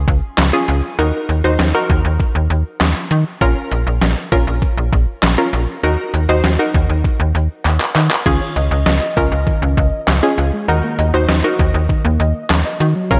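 A straight, steady 4/4 groove comes from a detuned 8-bit digital drum machine, with a thumpy kick, medium-tuned snare, hi-hat, handclaps and crash, overdriven and placed up front, while a snappy, metallic slap-like FM bass drives underneath. A mellow, full-bodied analog pluck with chorus carries the chords through this cool, nocturnal synth-pop passage, which is cut from a longer piece. After a drum fill at 7.7 seconds, a dark, gentle pluck enters at 8.3 seconds with chorused, delayed arpeggios, and the whole mix is soaked in a lush hall reverb that gives it a dreamy sheen.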